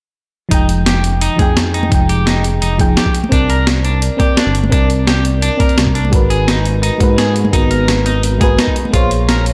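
A straight 4/4 liquid drum and bass groove runs at 171 BPM, built from a compressed, gritty breakbeat kit of hi-hat and medium-tuned snare over a thumpy electronic kick, both sampler-style and re-recorded in a large room. Bright, close conga hits with hard hands sit in the background from 1.4 seconds, adding a dry acoustic edge. Up front, a smooth synth bass blends sawtooth and triangle tones with ring modulation, vibrato and tube saturation, holding sustained dark notes low in the register. A mellow FM electric piano plays soft, round, decaying chords through chorus and tape echo, moving from Fm9 to Csus2, Abm9 and finally Bbm9 in F minor. Over this, a twangy, slightly broken-up electric guitar picks arpeggios, bright yet softened by a low-pass filter and washed in spring reverb and delay. The mood is dreamy and melancholic in this short cut from a longer piece, with little reverb on the mix as a whole.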